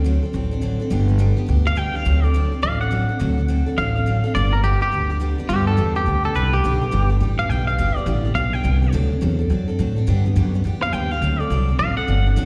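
Rollicking and retro, this short rockabilly excerpt swings at 210 BPM in G major as a woody, thumpy upright bass sits up front under a full-bodied picked steel-string acoustic guitar, and a bright, twangy electric guitar joins them at 1.7 seconds with slapback and tape echo plus analog chorus, all heard live through a venue's PA with recital hall reverb.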